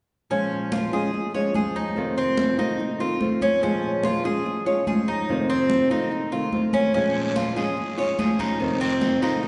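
A straight 4/4 pulse at 145 BPM drives this danceable, sultry slice of Cuban son and guajira in Bb minor, cut from a longer piece. Congas set the groove from 0.3 s, their high-tuned, thin skins struck with soft hands and sounding bright yet distant, as if heard across a large room. Up front from that same moment, a fingerpicked nylon-string guitar supplies a warm, classical accompaniment in its low and middle register. Beside it, the Cuban tres plays arpeggios whose doubled strings, some octave-paired, give a metallic, picked edge. The harmony rocks steadily between Bbm7 and F7. A raspy, vintage-toned guiro joins softly at 6.9 s, and a wet church reverb with a long tail wraps the whole band in a hall-like glow with a gently rolled-off top end.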